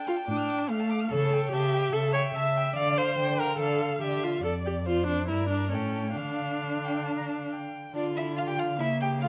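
A quick classical-period movement for string quartet, this passage is cut from a longer piece and carries a stormy, restless mood with a rubato feel. The first violin sings the melody high above the ensemble, bowed with vibrato, portamento and a soft attack, while the second violin adds its own expressive second line with a smooth top. The rich viola sits close and up front as the most prominent voice, filling in the accompaniment with expressive, vibrato-laden bowing, and the cello, also close and forward, anchors the bass with a warm, gliding tone. The harmony moves restlessly through dark minor chords and their dominant and back to its home chord, before a new section arrives at 7.9 seconds. Close, detailed microphones and light reverb keep each single player clearly audible.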